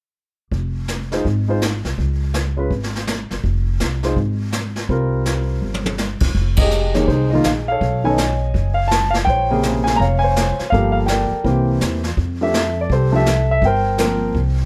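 Lightly reverberant and close, this smoky, cool swing fragment from a longer jazz piano trio opens at 0.5 seconds with a woody, thumpy pizzicato upright bass and a roomy, distant-sounding brushed kit with a boomy kick. An open, warm upright piano carries the melody from 1.1 seconds over minor-leaning extended chords. A drum fill leads into a band accent at 6.5 seconds, opening a second section.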